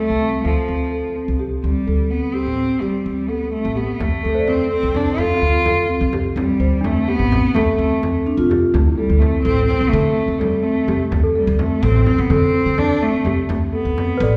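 A warm bowed cello with vibrato carries the melody up front in this pensive, urgent excerpt of contemporary chamber music in 5/8 at 253 BPM (eighths) in D dorian, over round soft-mallet marimba arpeggios and a dark, thumpy pizzicato upright bass. A deep frame drum played with soft hands joins at 4.0 seconds, and a delicate, bell-like celesta enters in the background at 4.3 seconds. A ringing metallic vibraphone adds a brief second line at 8.0 seconds, all within the wet reverb of a church or concert hall.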